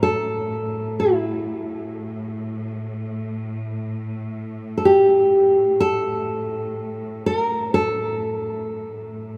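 Unhurried and rubato over a loose 4/4, this mournful Caucasian folk lament is cut from a longer piece and aches with longing. A fingerpicked nylon-string guitar carries the melody up front between E4 and Bb4, its fresh strings giving a full-bodied, deep classical tone, while a quieter bowed string section holds a lush, focused drone on A2 with vibrato. A wet cathedral reverb with a 4.8-second tail gives the recording a vast space.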